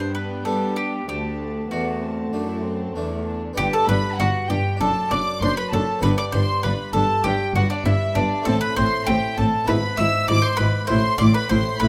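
A straight, steady 4/4 pulse drives this lively, festive passage, cut from a longer baroque-style concerto movement with solo episodes. Up front, a bright, picked bowl-back mandolin with double strings carries the melody in its middle register. Above it, a chamber violin section also plays the melody with rich, focused, bowed vibrato. A studio violin section with a smooth top plays a second line in the background, while a viola section and a close-miked, dry Flemish-style harpsichord with two sets of strings fill in the accompaniment. A clear, lush cello section holds the bass from the start, joined at 3.6 seconds by a distant double bass section with a soft attack, as the harmony moves from G and D toward A minor and closes on an A5 chord near 10.9 seconds. A moderate recital-hall reverb gives the ensemble a sense of space.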